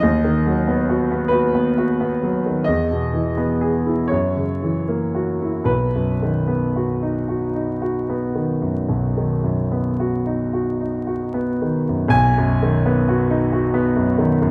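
A clear concert grand piano opens alone, sounding the first chord, B over D#, and plays the whole fragment of a tender, nostalgic romantic nocturne in B major. The tempo is slow and elastic, with rubato over a 12/8 lilt at roughly 36-46 dotted-quarter beats per minute. The harmony moves from that opening chord to E at 2.7 seconds, then to F#7 and back to B at 5.7 seconds. A contrasting passage arrives at 12.1 seconds before the fragment breaks off at 14.5 seconds. The piano sits up front with an open character and deep bass, ranging from B1 to G#5, set in a moderate scoring-stage reverb within a dark, warm production flecked with vinyl crackle.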